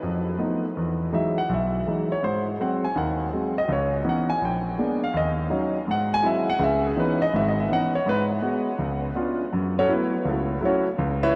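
A swinging 4/4 pulse at 164 BPM drives this short jazz excerpt in C# minor, tuned slightly sharp of standard pitch, where a lone concert grand piano carries a late-night, smoky mood across the full 11.3 seconds. Up front and natural, the piano has a deep bass reaching down to G#1 and climbs to G#5, moving through rich harmony such as F7#11, Emaj9, C#m9 and A#7b9 before arriving at F#m7 as a new section begins at 9.5 seconds. A huge, wet reverb with an 8.5-second tail places it in a vast, echoing space, and lossy compression artefacts tinge the sound.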